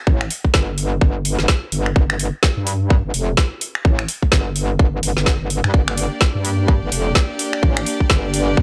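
A tight, up-front electronic kick and a metallic, saturated wobble bass with chorus and sidechain pumping drive this bouncy, gritty bass house excerpt at 127 BPM in G minor, with a swung 16th-note feel. A layered garage kit adds finger snaps, metallic hats and a woody snare in a dry, close-sounding mix. At 5.7 s a rich, earthy chamber string section enters with bowed sustained chords, light vibrato and its own sidechain pumping.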